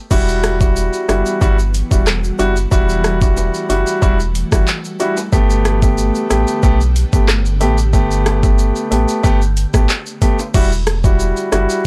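Up-front grand piano, a deep, full sine-and-triangle sub bass with an octave, and an overdriven electronic island pop kit with knocking kick, metallic hats, handclaps, rim clicks, shaker and crash all start together at 0.1 s in this sultry, bouncy dancehall excerpt, with acoustic egg shaker and hard-handed timbales tucked in the background. Moments later an ethereal, airy pad of detuned, warbling vintage tones enters behind them with chorus and reverb, its slow-attack chords pumping from the sidechain alongside the piano as the harmony moves from Emadd9 to Gadd9 at 5.3 s. The pad drops out at 10.5 s as the chords return to Emadd9, and the recording carries a dry, gritty digital ambience.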